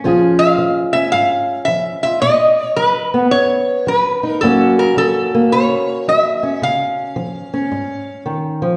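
Acoustic country blues for two guitars, this short excerpt cut from a longer piece rolls along at 109 BPM in 4/4 with a swung eighth-note feel, its mood rollicking yet laid-back. A fingerpicked old ladder-braced acoustic guitar carries the accompaniment from 0.0 to 8.8 seconds, its dark, woody, boxy tone and old strings sitting up front in the low and middle register. Over it, a lap resonator guitar played with slide and fingerpicks takes the melody from 0.4 seconds, its metallic, nasal voice also up front and pitched higher than the accompaniment. The harmony moves from C# to B, then F#, and back to C#. A wet recital hall reverb surrounds the duo, and the listener seems placed further back in the room, with the top end dulled and lacking sparkle.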